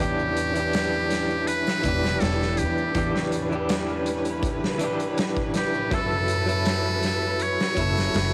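Trip hop at 81 BPM in E dorian, smoky and cinematic, this excerpt from a longer piece puts a buzzy, breathy jazz trumpet with a metal mute and dub echo up front beside a slightly broken-up electric guitar through a small old amp, coloured by tremolo and tape echo, over a growly, woody pizzicato upright bass, a huge arena drum kit with hi-hat, punchy kick and medium-tuned snare, lush bowed strings with vibrato and portamento in the background, very quiet maracas and triangle, and a dreamy reversed granular texture entering at 0.3 s, all of it set in a light-reverb home recording on cassette with vinyl crackle as the harmony moves from Em7 to F#m7 at 5.9 s.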